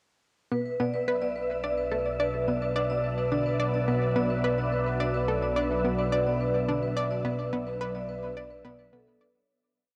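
Expansive and cosmic, this short ambient piece of sequencer-driven space music sits on a single B minor chord in a straight 4/4 pulse. A bright, resonant sawtooth pad drifts in on a fade from 0.5 seconds, its detuned, slowly shifting chords colored by chorus and phaser, while a fat, saturated analog bass holds a sustained root low beneath it. Up front, a round analog pluck repeats a 12-step sequence that drifts against the bar, its fast attack and short decay thrown back by chorus and tape echo. A metallic, ringing vibraphone played with medium mallets circles a 3-step arpeggio loop with motor vibrato and its own tape echo, and an airy, breathy tuned-noise texture holds a single high note from 0.7 seconds. The whole recording swims in a huge, cavernous reverb and a worn, warbling cassette-tape drift, and the piece fades out between 6.5 and 9.5 seconds.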